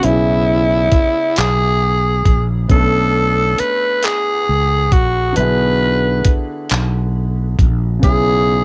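A raspy tenor saxophone leads this slow six-eight R&B passage at 45 BPM, carrying a yearning, sultry melody from E4 to B4 with vibrato, a punchy edge and a smooth top. A warm concert grand piano accompanies it with deep bass, long sustain and audible action noise, while a round, dark fretless electric bass holds the low end up front. A dusty, sampler-style soul drum kit with a thumpy kick, hi-hat and handclaps sounds compressed and gritty, as if re-recorded in a small room, and it stops at 8.2 s, just before the other parts finish at 8.6 s. The harmony moves from C#m7/B to Bm7 at 2.7 s and E9/B at 5.4 s before returning to C#m7/B. The saxophone and piano carry a cassette-tape colour, and light reverb gives this home-recorded fragment of a longer piece an intimate feel.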